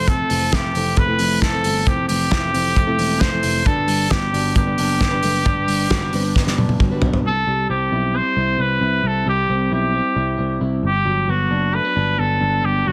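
A dense, heavily limited modern mix with light reverb frames this bright, breezy jangly indie pop excerpt at 134 BPM in a straight 4/4, moving from Fmaj7 and Gmaj7 toward C. Up front, a vintage-toned trumpet with light vibrato and tape echo carries the melody throughout, over a slightly broken-up electric guitar through a small old amp playing arpeggios and a dark, foam-muted, round picked bass. A full-bodied fingerpicked jumbo acoustic guitar sits in the background, and a cloth-damped, thuddy drum kit with a fat snare, tight kick and rolled-off top drives the first part before a drum fill at 6.4 seconds, both dropping out at about 7.3 seconds.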